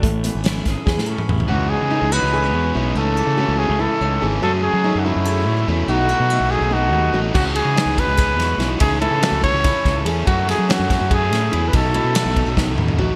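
Math rock with a midwest emo lean, this playful, wistful excerpt runs at a quick 287 BPM in 7/8, set in A lydian over jazzy chords such as Amaj9, C#m11 and F#m9, with a bright 1980s-style digital sheen and a lush hall reverb. A twangy, lo-fi electric guitar through a small old amp and a thumb-plucked flamenco guitar with subtle chorus and digital delay sit in the background, while a round, fuzzy fingered bass with overdrive pushes up front. At 1.5 seconds a smooth, vibrato-laden trumpet takes the solo melody and a double-tracked overdriven guitar riff enters, and the loose, up-front drum kit, with a tight kick, gated reverb and fills, drops out until 7.3 seconds.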